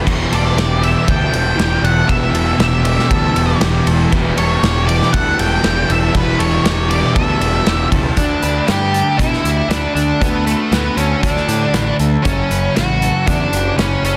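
A brooding, dreamy stretch of shoegaze and dream-pop rock opens with clean, twangy guitar arpeggios set behind a crunchy overdriven riff, which carries reverse reverb, and a dark, thick fuzz riff. A fuzz-toned picked bass and a loose, up-front indie drum kit, with a pumping small-room sound and a soft-clipped snare, join almost at once, and a distorted octave-fuzz lead melody with slapback echo sits on top from 0.3 seconds. The crunchy guitar drops out at 8.2 seconds as the chords move from Em to Dsus4 and then F#m, all in a dense, heavily limited mix with light reverb.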